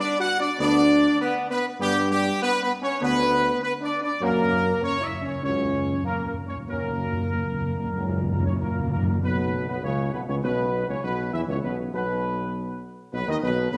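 Regal and triumphant, this classical brass passage, cut from a longer piece, puts a soft-attacked trumpet section up front with the melody over tight, mellow French horn chords with light vibrato; a warm trombone section in the background and a distant, roomy tuba join at 0.6 seconds, articulate hard-mallet timpani on calf heads play a fill from 4.2 to 9.2 seconds, and a concert hall reverb surrounds the ensemble as the harmony moves from G to F# and then falls away to a closing passage free of chords.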